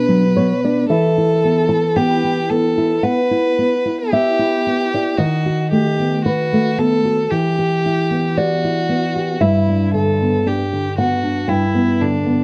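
Taken from a longer piece, this slow, rubato passage in 4/4 at 56 BPM is a tender, lyrical romantic duo that moves through Bm, Em and B7/D# before settling on Em7/G. A single bowed violin carries the melody with a clear, smooth, even tone and vibrato, while the nylon-string guitar, thumb-plucked on old strings, supplies a dark, woody classical accompaniment; both sit up front throughout the 12.4 seconds. Light reverb and a dark, warm production frame the pair, with traces of lossy compression in the sound.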